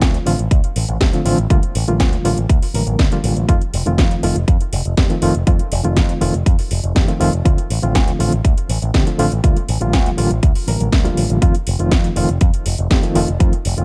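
A straight 4/4 pulse drives this sunny, feel-good nu-disco excerpt, with a punchy, tape-tinged electronic kick sitting up front and a house drum kit adding a cracking snare and metallic hi-hats. A bright, picked electric bass run through an envelope filter holds the low end, while a reedy, clean electric piano with fast tremolo, vintage 12-bit sampler grit and delay cycles through Dm7, Bb6 and F7 twice. The mix is dry and close, with very little reverb.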